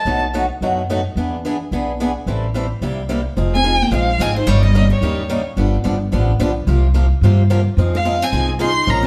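Fiery and virtuosic, this short cut from a longer acoustic string swing piece in the jazz manouche style moves with a swung 4/4 lilt. A boxy, up-front swing-style guitar plays picked accompaniment from 0.1 s onward, alongside a pizzicato upright bass whose gut strings give a woody, thumpy low end. After a brief opening flicker, a single bowed violin carries the melody from 3.6 s and returns near 8.0 s, its dark, smooth-topped tone shaped by expressive vibrato, portamento and a soft attack. A bright, picked steel-string guitar adds a second line in the same brief spots, with audible finger squeak. The harmony moves through B7, E7, Am7 and C7 in the first section, then settles into F minor for the second, running from Fm7 through Eb7/G, G7 and C7sus4 back to Fm7. The wet reverb places the ensemble further back in the room, and lossy compression artefacts colour the sound.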